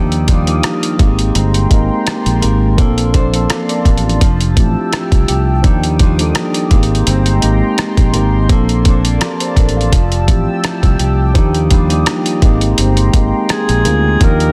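Dreamy and romantic, this contemporary R&B groove moves at 84 BPM with a light 16th-note swing, cycling through lush major-ninth chords (Ebmaj9, Abmaj9, Bbmaj9, Fmaj9) as a mellow, clean tine electric piano carries the accompaniment over a shimmering, chorused pulse-width pad with slow-attack sustained chords. A gritty, tape-warm sampler-style drum kit with a thumpy kick, hi-hat and rim click sits up front alongside a round fingered electric bass, while a fingerpicked flamenco guitar plays delayed arpeggios in the background. At 13.5 seconds a breathy subtone alto saxophone with light vibrato enters for a brief solo phrase, all within a dry, dense and heavily limited modern mix cut from a longer piece.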